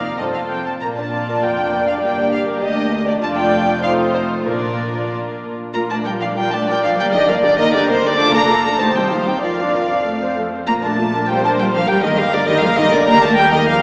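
Graceful and lively, this quick classical-period movement for string orchestra moves at 98 BPM in 2/4 with a rubato feel in Bb major, turning to a new section at 5.7 s. A warm chamber violin section carries the melody up front with light vibrato and a smooth top, over a pure, floating second violin line, a distant viola accompaniment, and a bass of dark cellos and woody double basses with vibrato. Every section is bowed sul tasto, the upper strings and cellos with soft attacks, and a wet concert hall reverb sets this cut from a longer piece further back in the room with a small speaker sound.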